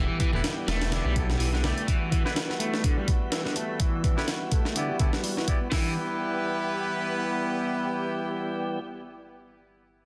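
Breakbeat in a raw, funky vein, this short cut opens on a thick, menacing detuned saw bass and soft-handed congas that both stop by 1.7 seconds, while a gritty, pitched-up sampled break with a thumpy kick and high-tuned snare sits up front. A double-tracked, crunchy guitar riff runs through a filter sweep until about 5.9 seconds, and a punchy horn section with light vibrato fires stabs over the sustained, pumping chords of a lightly overdriven tonewheel organ. A lush hall reverb and a dense, heavily limited master give the sound weight, with a faint mains hum underneath.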